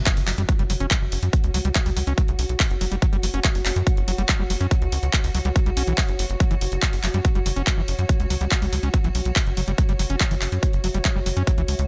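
A punchy, layered electronic kick drum sits up front in this psychedelic trance excerpt, driving a straight 4/4 pulse at 142 BPM with tuning set to A4 = 438 Hz. Beneath it, a tight sequencer bass drives between F#1 and F#2 with a sawtooth, square and sine blend, wave-folded tone, filter pluck and moving notch, mellow and saturated through tube saturation. A techno drum kit adds handclaps and tape-warm hats that were re-recorded in a small room, while an overdriven acid bass riff enters at 0.3 seconds, squelchy and gritty, with resonant filter sweeps, distortion, digital delay and sidechain pumping. Further back, a warbling, nostalgic lo-fi pad in a dark square and triangle tone carries chorus and reverb, and from 0.7 seconds a swarming, detuned granular drone holds tense, evolving chords with reverb and pumping of its own. A very quiet electronic impact opens the passage and ends by 1.3 seconds, and the overall sound is dry and alien.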